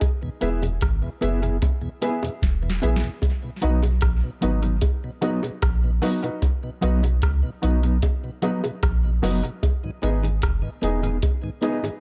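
A soft vintage rhythm box and tight, high-tuned bongos open this laid-back roots reggae excerpt at 75 BPM in B major, the rhythm box's deep kick, tonal snare, rim click and metallic hi-hats sitting up front. Within the first half second a mellow tonewheel organ, an electric guitar and a dark upright piano join. The organ stays in the background with key click, vibrato and a slow rotary speaker plus tape echo, while the clean, fingered guitar carries tremolo and its own tape echo. The woody, short-sustained piano adds stabs, and a round, soft dub sub bass with a fast attack and sustained tone anchors the bottom up front. The chords move from E to B at 3.2 seconds and to G#m at 9.6 seconds, with a drum fill just before the first change, all in a dry sound.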